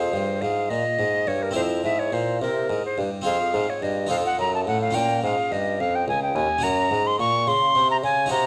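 In a 6/8 at 71 beats per minute, counted in dotted quarters, this brief fragment of a baroque-style sonata movement breathes with a rubato feel that gives its grave, introspective F minor mood room to settle. An alto recorder carries the melody up front, its pure, wooden tone shaped by a soft attack, a gentle chiff and vibrato, with lifted highs that let it float between Bb4 and Db6. Beneath it, a harpsichord in French style supplies the continuo accompaniment, also up front, its plucked, brilliant sound doubled by octave strings. A warm bassoon anchors the bass between Db2 and Db3 with a light vibrato and classical poise. The harmony moves from Fm through C7/F and back, darkens via F7 into Bbm at 5.0 seconds, and arrives on Gb at 6.6 seconds before the 8.5-second fragment ends. A moderate recital hall reverb surrounds the trio with a natural sense of space.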